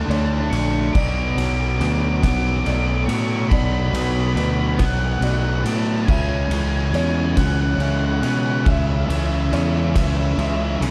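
Euphoric and cinematic, this post-rock excerpt moves at a slow 47 BPM in 6/8, with a fuzzed octave lead guitar carrying the melody over very quiet, twangy clean guitar arpeggios, a mellow felt-muted upright piano with audible action noise and delay, scooped distorted and sludgy overdriven guitar riffs in the background, a growly fuzz bass up front, and an oversized low-tuned drum kit with a punchy kick, fat snare and dark cymbals pumping in a stone room, all wrapped in studio reverb as the chords pass from D5 to Bm7 to C#m.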